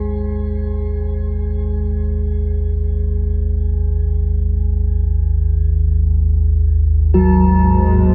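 Ominous and cavernous, this dark ambient drone unfolds in free time, cut from a longer piece and tuned slightly sharp to A4 = 441 Hz. A deep, rumbling drone sits up front across the full 8.1 seconds, its triangle and sawtooth tones swelling in slowly and sustaining low in the register, thickened by lush chorus and its own built-in reverb. Alongside it, a bronze singing bowl rings with a metallic, meditative tone and slow beating, struck with a wooden striker and also placed up front, its boxy small-room character bathed in shimmer reverb. Following the change to an F#add9/G# harmony at 7.2 seconds, a granular cloud pad enters at 7.4 seconds with sustained chords, a cloudy, blurred and full-bodied sine texture that evolves as it settles in. The whole production is dark and enveloped in a wet cathedral reverb with a 5.2-second decay, giving the brief passage a vast, echoing depth.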